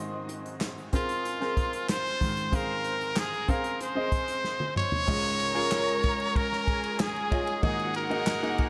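A brilliant, punchy trumpet carries the melody from 1.0 seconds, up front with vibrato, scooped notes and a delay trailing its pop-style solo line. This is a hopeful piano-driven pop piece at 94 BPM in Db major, a short cut from a longer track, set in a dreamy mix soaked in a huge ambient reverb. A clear concert grand piano opens the recording and plays accompaniment with deep bass, short sustain and a subtle chorus, sitting present and polished near the front. An unplugged acoustic drum kit joins at 0.3 seconds with a punchy kick, medium-tuned snare, dark cymbals, hi-hat, toms and handclaps, played with bundle sticks, and a drum fill leads into the second section. At 5.1 seconds, as the harmony moves to Dbadd9, a warm studio violin section adds a lush, smooth bowed second line with vibrato, resting in the background.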